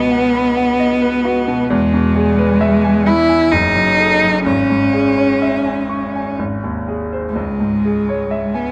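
A moderate scoring-stage reverb gives this brief, elegiac fragment of a longer romantic duo a sense of space, with both instruments placed up front. A single bowed cello carries the melody in a rich, expressive voice, shaped by vibrato, a soft attack and portamento between notes. Beneath it, a clear grand piano supplies the accompaniment with a smooth, vintage character and a long sustain, reaching from deep bass notes up into its upper register. The music moves in an unhurried three-beat metre with a flexible, rubato feel, and its harmony passes from an opening B over C# chord through E, a diminished chord and C# minor before resolving from G# back to C# minor at 7.4 seconds. The mood is melancholic throughout, and both parts play together for the full 8.7 seconds.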